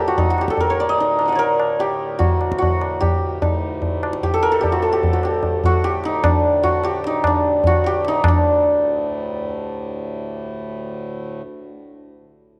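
A moderate plate-reverb glow surrounds this radiant, meditative Hindustani excerpt in raga Bhairav on D, set in 3/4 at 149 BPM and speeding up through its first 10.6 seconds, where an up-front hammered santur rings out the melody over a reedy, nasal, breathing harmonium drone, while a high-tuned, close and dry tabla plays from 0.2 to 8.4 seconds before the santur continues to the cut at 12.0 seconds.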